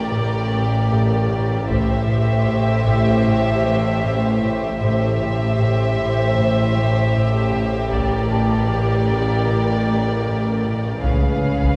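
In this tense, uneasy cinematic suspense excerpt, soft-attack sul tasto violin sections float over a rich cello section, a background double bass section, a nasal, detuned string-like drone and a very quiet thumb-plucked harp riff, with delicate bell-like celesta texture until 11.1 seconds, while heavy-stick taiko drums strike from 1.7 seconds and return at 7.9 seconds, all heard from further back in a reverberant concert hall.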